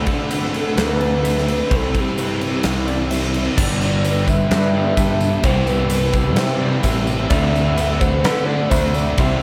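Dreamy and hazy, this shoegaze and dream pop rock excerpt moves at 128 BPM in G major, drifting through chords like D13, Cmaj7 and G6 as a huge arena drum kit with a fat snare, punchy kick and bright cymbals drives up front beside a growling, overdriven picked bass. Two crunchy overdriven guitars sit in the background playing riffs, one carrying reverse reverb, while a dark fuzz guitar and a very quiet, compressed clean guitar picking arpeggios thicken the wall of sound, with a hollow, flute-like pad holding sustained chords under a chorus shimmer. From 0.6 seconds a pure, breathy sine lead glides and warbles through the melody with chorus and digital delay, and a jingly tambourine adds sparkle in the back of a small, lightly reverberant room.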